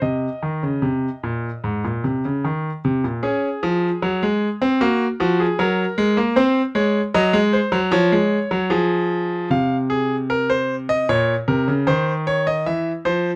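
A straight 4/4 pulse at 76 BPM drives this serious, baroque-style two-part invention for solo concert grand piano, a short fragment cut from a longer piece. The piano alone carries both lines from 0.0 to 13.3 seconds across a range from Ab2 to F5, its tone brilliant and polished with a deep bass. The music opens on a rootless Ab harmony before settling into Db major at 3.2 seconds, moving through Gb, Ab7 and Db/F. At 9.5 seconds it turns to F minor, passing through Fm/C and Bbm before stopping on C/E. Close, detailed microphones and little reverb keep the instrument present and up front.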